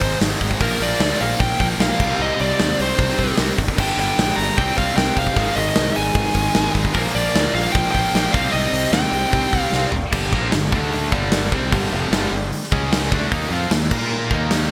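Driving and menacing, this hard rock excerpt at 151 BPM pits a smooth overdriven lead guitar melody, which drops out at 9.9 seconds, against picked high-gain distorted riff guitars, a hollow-body semi-hollow guitar with subtle chorus, a punchy fuzz bass and an up-front, gated big rock drum kit whose fill at 9.7 seconds ushers in a second section, all bathed in a lush hall reverb and bright 1980s-style digital production.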